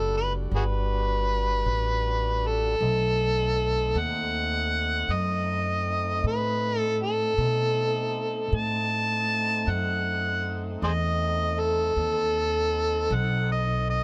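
A slow 12/8 blues at 52 beats per minute with a straight feel sets a smoky, brooding mood over a rootless Em7 that moves to B7b9 at 2.8 seconds in this short cut from a longer piece. Up front, an amplified, gritty harmonica takes the jazz-style solo with vibrato, tongue slaps and scooped notes, while a woody, dark pizzicato upright bass on steel strings sits close beside it. Underneath, a thick, lightly overdriven tonewheel organ holds sustained chords through a slow rotary speaker, all within a moderate booth ambience.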